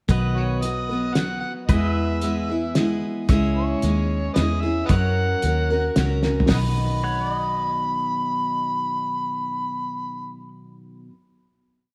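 A heartfelt, nostalgic honky-tonk and classic country waltz in 3/4 at 112 BPM in B major, built on a muffled, cloth-damped drum kit with a fat snare and tight kick that rolls a fill at 6.2 seconds and stops at 6.6, while a dark, foam-muted fingered electric bass plays root-and-fifth lines with walk-ups. Up front, an overdriven, gritty harmonica carries the motif-based melody with vibrato, scooped notes and tongue slaps, over bright strummed open chords on a full-bodied dreadnought acoustic guitar and quieter twangy pedal steel chords that glide with volume swells. The short verse moves from B through E, C#m and F# before settling on a final B chord at 6.5 seconds, all heard with light reverb from further back in the room.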